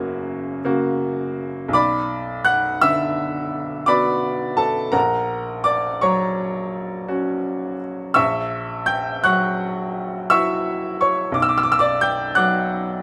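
Melancholic and wistful, this fragment of a romantic classical nocturne for solo upright piano moves slowly at 56 BPM in dotted quarters, in a 9/8 metre with uneven beats and free rubato, in B minor with the tuning set at A4 = 441 Hz. The bright, woody piano sits up front with long sustain, spanning F#1 to G6 and recorded with close, detailed microphones in light reverb. Harmony opens on F# before settling into Bm at 1.8 seconds, then passes through F#/A# and F#7/A# before returning to Bm at 11.3 seconds.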